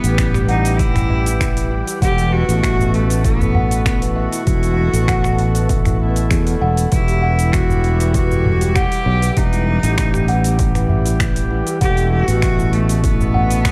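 Organic downtempo in E minor at 98 BPM, this short, mystical excerpt moves in a straight 4/4 over a repeating sway between Emadd9 and B7sus4/E. A bright, biting cello carries the melody with light vibrato and a distant, intense bowed tone, its echoes trailing behind it, while a reedy, nasal hand-pumped harmonium breathes underneath with sidechain pumping and delay. A very quiet ethereal pad holds sustained chords with a slow attack and phaser shimmer, and a woody, hollow kalimba rings out delayed arpeggios from 0.2 seconds. The growly fretless electric bass sits up front, pumping and thickened by lush chorus. Rhythm comes from an overdriven, punchy electronic kick and a deep house kit of cabasa, finger snaps and metallic hi-hats, with a small, very quiet udu adding acoustic colour, all set in a dark production with light reverb.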